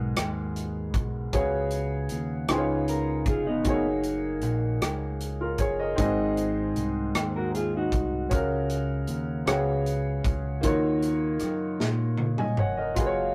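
Slow gospel in a straight 6/8, jubilant and hopeful, where a clear, open concert grand piano with deep bass carries rich extended chords over a fingered electric bass, a punchy modern drum kit with a medium-tuned snare plays a fill from 11.8 s, a dark, clean electric guitar adds brief second-line phrases at 2.9 s and 7.4 s, and a mellow French horn section with light vibrato enters on sustained chords at 13.0 s, all in a rough, booth-like rehearsal-room sound.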